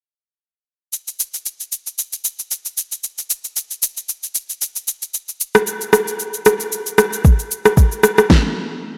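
A light swing on the sixteenth notes gives this short amapiano excerpt its hypnotic, deep pull in a steady 4/4. The only part is an electronic, produced R&B drum kit of kick drum, rim click, shaker and snare, entering at 0.9 seconds and playing until 8.4 seconds. Its kick is soft, its snare fat, and overdrive lends the whole kit a gritty edge while it sits up front in the mix. A lush hall reverb of moderate depth surrounds the drums. The groove halts in a brief stop from 8.3 to 9.0 seconds.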